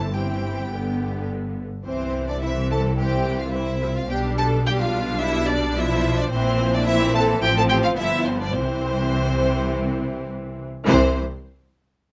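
A lively, spirited classical-period movement for string orchestra in C major at a quick 106 BPM in straight 4/4, with rich, focused violin sections carrying the melody and a second line, a smooth, up-front viola section supplying accompaniment, and a bass formed by a warm cello section set in the background and a soft-attacked, expressive double bass section, all five playing with vibrato throughout this cut from a longer piece and moving from C/G through C7/Bb and G7 to a cadence on C at 8.6 seconds, under light reverb.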